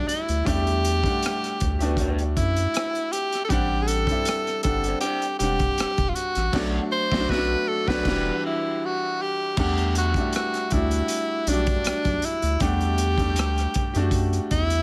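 A clear, up-front tenor saxophone carries the melody of this late-night, soulful neo-soul and R&B piece, its jazz-style solo voice shaded with vibrato and a breathy subtone. Beneath it, a bright upright piano with a woody, natural character supplies the accompaniment, while a round, deep analog bass with a fast attack and long sustain anchors the low end. A crunchy breakbeat drum kit comes in at 0.1 seconds, sounding saturated and gritty in a small room, with a punchy kick, a high-tuned snare, rim clicks, hi-hat and dark, rolled-off cymbals over a gently swung groove. From 1.8 to 8.3 seconds, an electric guitar through a small old amp adds a slightly broken-up, lo-fi second line in the background, coloured by wah and subtle chorus. The band hits accents together between 6.5 and 9.6 seconds, and studio reverb surrounds the whole cut-from-a-longer-piece passage as the chords move from Em7 through Am7 and Bm7 to Em9 and back.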